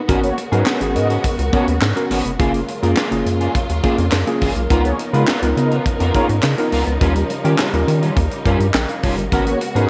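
This late-night, funky slice of early-eighties boogie funk opens on a mellow, slightly worn and faintly out-of-tune tine electric piano and a lush string section holding sustained chords in the background, its vibrato and portamento lending an expressive sheen. Within a fraction of a second the rest of the band arrives: a rubbery, hollow square-wave bass with a bouncy filter pluck sits up front beside a tight, natural-sounding acoustic funk kit of kick, high-tuned snare, hi-hat and handclaps. A dark, slightly broken-up electric guitar, played with the fingers and treated with ensemble chorus, carries a riff. From 0.2 seconds, round, brassy synth brass adds a second line with detuned sawtooth tone, vibrato, a filter sweep and its own chorus. The harmony moves through G#m11, F#maj9, C#13 and D#9 before returning to G#m11, all under light reverb in a passage cut from a longer piece.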